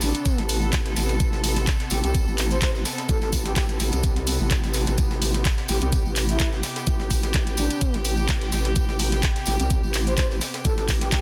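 A dense, heavily limited mix with light reverb carries this gritty, bouncy bass house excerpt at 127 BPM in A minor. A nasal, saturated vowel-sweep wobble bass sits up front with chorus and sidechain pumping, and a breathy, flute-like synth lead sings the melody through chorus, vibrato and dub echo. A distant, reedy string section holds dark, bowed chords on Amadd9, while a garage kit's handclaps and hats, a pitched-up sampler-style breakbeat kit and a jingly tambourine play from the start. A knocking, tape-warm electronic kick joins up front at 0.3 seconds.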